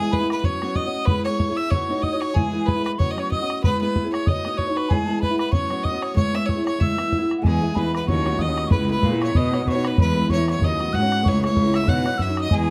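A bright, intense fiddle with light vibrato carries the melody of this lively Celtic reel, set in plate reverb and shadowed by an airy, hollow wooden whistle playing a mellow second line above it. A boxy, up-front picked steel-string guitar supplies the chords, while an open, boomy bodhran, close and dry, drives the swung eighth-note feel. At 7.4 s, as the tune repeats, a clear, focused bowed cello joins on the bass, all within a dark, warm production cut from a longer piece.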